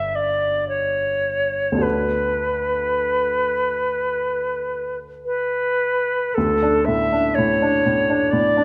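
Moderate recital-hall reverb gives this brief fragment of an impressionist classical duo a luminous, dreamy air, as a pure, silver concert flute with vibrato carries the tongued melody up front while a clear baby grand piano with short sustain supplies natural-sounding accompaniment in a rubato 4/4.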